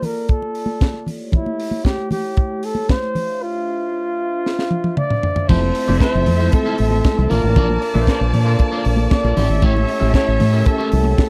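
A tight funk drum kit with a high-tuned snare and bright cymbals drives this danceable disco excerpt at 116 BPM alongside thin-skinned, damped congas, while a breathy, distant flugelhorn carries the melody over ethereal, low-pass-filtered glass harmonica chords during a filter sweep, and after a drum fill the round, punchy fingered bass, a lush symphonic violin section, a clean tine electric piano and a slightly broken-up guitar with phaser enter at 5.5 s, all captured in a dry, close 1970s-style studio sound.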